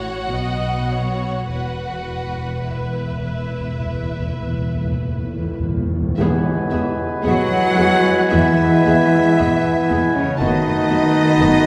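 A rubato pulse in 4/4 carries this slow, romantic orchestral movement, cut from a longer piece, with a serene, warm mood. Bowed string sections open together: a dark, woody violin section holds the melody high above a rich, focused second violin line, while violas fill in the accompaniment and lush cellos and double basses anchor the bass with smooth, even vibrato. Timpani with soft mallets on calf heads add a round fill from 1.5 seconds, and at 6.2 seconds the second section arrives with a full band accent as oboe, mellow bassoon, a background horn section holding sustained chords, trumpet stabs and a very quiet, dry tam-tam all enter. From 7.2 seconds a dark, distant clarinet and a pure, hollow flute join the second lines, thickening the woodwind colour. The whole is bathed in a generous scoring-stage reverb and heard from further back in the room, giving the ensemble a spacious, enveloping glow.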